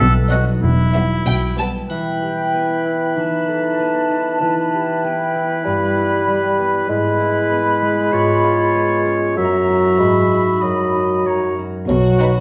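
At 96 BPM in a straight 2/4, this playful, whimsical film cue has a mischievous, magical air, set in E minor before turning to B major from 6.9 s. A ringing, fingerpicked concert harp spins arpeggios throughout, while bowed string sections open the cue, with lush double basses and cellos on the bass, violas in the background, and a distant violin melody over a focused second violin line. At 1.9 s the strings fall away and the winds take over: a pure, straight-toned flute section up high, a present clarinet, and a mellow bassoon carrying the accompaniment, with a distant, roomy oboe heard from the start. A close, dry triangle adds bright touches at 1.9 s and again near the close. The lower strings return briefly at 11.9 s as the harmony settles on B, with the violins rejoining at 12.2 s, all within a wet recital hall reverb, in this cut from a longer piece.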